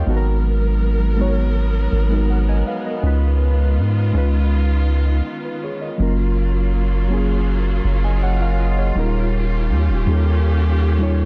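A longing, late-night mood hangs over this short slice of contemporary R&B, moving at an unhurried pace in a straight four. Muted, felt-like synth keys carry the accompaniment throughout, their soft, intimate tone touched with chorus and a faint noise layer that gives them an evolving, shadowy character. Beneath them, a warm studio string section holds sustained chords, bowed with vibrato and a lush, smooth top. Anchoring it all, a deep, long 808-style bass sits up front with a mellow, sine-like roundness, each note striking quickly and then decaying. The harmony drifts through rich ninth and major-seventh chords, G#m9 to C#9, F#maj7 and D#9, inside a dark, small-room production.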